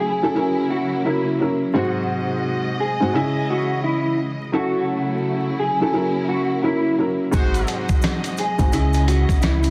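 A dark, woody upright piano sits up front with a clean, fingered electric guitar melody and lush bowed strings in this gritty, dark boom-bap hip-hop excerpt at 86 BPM, swung over changes like F#7, G#7 and C#madd9. At 7.3 seconds a thumpy, tape-warm sampler-style kit with rim clicks and hi-hat drops in alongside a deep sine sub bass, a grainy shaker in the background, and a brief punchy horn stab trailed by digital delay. The dense, heavily limited master carries vinyl crackle and small room ambience.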